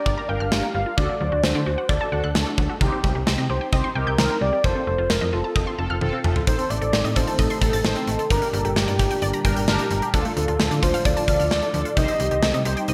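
Nocturnal and driving, this synth-pop excerpt moves at 131 BPM in 4/4 with a straight feel, set in G minor and cut from a longer piece. A velvety, smooth synth lead carries the melody throughout, its detuned sawtooth tone touched with vibrato, chorus and delay, while a lush, warbling unison pluck spins bright arpeggios in the background. Mellow synth brass supplies round, evolving accompaniment with a dark edge, colored by chorus, phaser and a filter sweep, and a snappy FM bass with a metallic, digital attack anchors the low end. Up front, a gated 80s drum kit of hi-hat, tight kick, medium-tuned snare and toms rings in a bright stone room, with a drum fill at 6.0 seconds leading into a second section where a warm analog pad enters at 6.5 seconds with slow-attack sustained chords. The harmony travels from Gm7 through D, Cm and F7, then shifts to Adim, Gm, Dm and back to Cm, all framed by a moderate plate reverb and a bright 1980s-style digital production.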